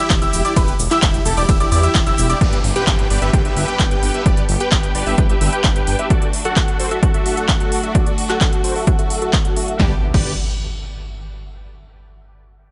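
A straight 4/4 pulse at 130 BPM drives this triumphant, anthemic festival progressive house excerpt in G major, which opens on a drop: a punchy, overdriven kick sits up front beneath a layered dance kit of crisp hats, snare, handclaps, shaker, ride and crash, while a huge, thick supersaw riff pumps through dub echo, a chorused, mellow detuned saw bass holds the low end, and brilliant grand piano arpeggios ring briefly before a band accent at 1.9 seconds. At 2.4 seconds the piano drops out, a filter sweep begins on the supersaw, and biting, lush bowed strings enter distant in the background alongside electronic downlifter and impact effects, all in a dry mix.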